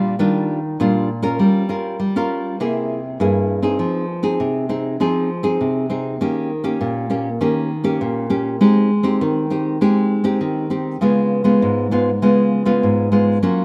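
A straight 4/4 samba at 100 BPM in F minor, tuned to A4 = 438 Hz, this bittersweet yet lively fragment of a longer piece features a solo fingerpicked nylon-string guitar played in a classical manner, sitting up front from G2 to Bb4 with audible finger squeak. An opening passage moves through Ebmaj9, Gm7b5 and C7b13 before settling at 3.8 s into a section that unfolds over Fm7, Eb7, Abmaj7 and Db7. The guitar's warm acoustic tone sits in a moderate plate reverb within a rough home demo mix.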